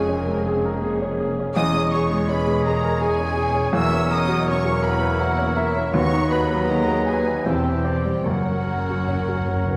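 A tragic, passionate romantic movement for piano and orchestra in 3/4 at 72-84 BPM, played with rubato, opens with a present, polished grand piano up front carrying the melody alongside an expressive, close violin section with vibrato. A pure-toned flute, clear oboe, roomy clarinet and a soft, distant second violin section weave second lines, while a mellow bassoon and smooth viola section accompany. Very quiet French horns hold sustained chords until 8.5 s, dark, woody double basses and focused cellos anchor the bass, and dry timpani arrive with a fill at 8.2 s, the whole set in a wet scoring-stage reverb.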